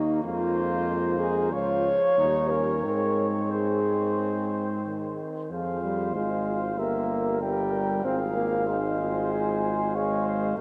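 Bathed in a huge, wet reverb that places the players in a vast, echoing space, this triumphant classical brass quintet fragment at 93 BPM moves with uneven beats from Ab major into F minor at 5.5 s. A mellow trumpet with light vibrato and a soft attack carries the melody over a distant, roomy flugelhorn on the second line, while a present French horn and a warm trombone fill the accompaniment and a clear, vintage tuba sits up front on the bass.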